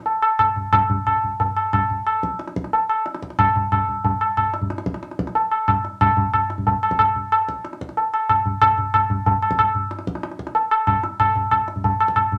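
Radiant and devotional, this brief Indian classical excerpt at 184 BPM in a straight 4/4 features a solo high-tuned acoustic tabla with a short ring, heard close, dry and up front against a small room reverb, the tempo speeding up across its 12.4 seconds before a new section arrives at 11.2 seconds.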